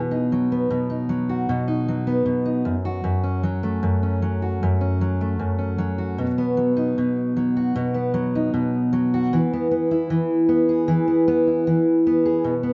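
A fingerpicked steel-string acoustic guitar plays alone from the first second, its jumbo body sounding full and close, with finger squeaks audible and a touch of tape echo trailing its notes. This carefree, heartfelt pop fragment moves from B to F#m, then shifts at 6.2 seconds into a second passage that returns to B and settles on E. Light reverb and a dark, warm production give the guitar an intimate, rounded glow.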